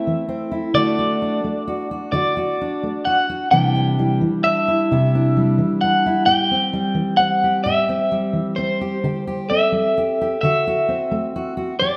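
Acoustic folk-pop ballad in 6/8, moving at a slow 44 beats per minute in dotted quarters with a straight, tender and nostalgic feel. An electric guitar at the edge of break-up carries the melody up front from start to finish, its picked, compressed tone slightly gritty and treated with tremolo. Beneath it, a fingerpicked steel-string jumbo acoustic guitar supplies full-bodied accompaniment across its low-to-middle range for the whole 12 seconds. A vibraphone played with soft mallets enters at 4.0 seconds and drops out at 10.8 seconds, its mellow, ringing arpeggios sitting close-miked and dry in the background with a medium motor vibrato. The harmony moves from Am/E through D, Cadd9 and Am7 before settling on D7sus4 resolving to D7, and the band sounds as if playing live together in a stone room with a moderate reverb tail. This is a short section taken from a longer piece.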